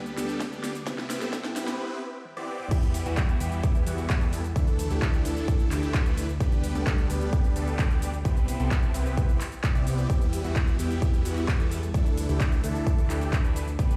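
Heard through a big sound system in a bare stone room, this powerful, euphoric festival progressive house excerpt at 130 BPM in E minor opens with a short build-up of drum fills and a break before the drop at 2.7 seconds. From the very start, a huge, bright, detuned supersaw lead with phaser, digital delay and sidechain pumping carries the riff over a fat, thick sawtooth analog bass with a filter sweep and its own sidechain pumping. They are joined by an overdriven big-room kit of huge snare, metallic hats, handclaps, shaker, toms and crash, and a punchy, up-front electronic kick that enters at 0.4 seconds, as the chords cycle through Em, Dsus2, G/D and Cmaj7.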